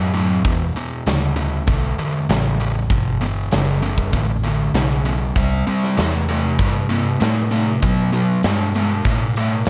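A straight 4/4 groove at 98 BPM sets up this smoky, heavy slice of blues rock power trio and southern rock in E minor, with a big acoustic rock drum kit entering at 0.2 seconds on hi-hat, punchy kick and medium-tuned snare, sitting up front. A double-tracked, compressed fuzz guitar carries the picked, distorted riff over Em9, C and B5 changes, joined from the start by a dark, round, foam-muted fingered electric bass with an amped, punchy tone. Light reverb and small room ambience frame this short cut from a longer piece.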